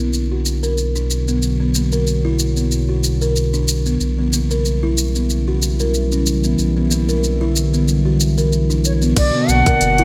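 This mystical organic downtempo excerpt, at 93 BPM in B harmonic minor, opens with a detuned, warbling analog pad under a filter sweep and sidechain pumping. With it come a buzzing, woody kalimba playing arpeggios through a digital delay and a round sine sub bass, also sidechain-pumped, while softly mixed afro-pop drums add smooth hi-hats, shaker and crash cymbal as the chords move from Bm through C#m7b5/B and Em7/B back to Bm at 9.2 seconds. An airy, reedy bansuri melody with vibrato enters at 8.9 seconds, joined briefly by a tight, tape-tinged electronic kick, with a plate reverb and bright 1980s-style digital sheen framing the sound.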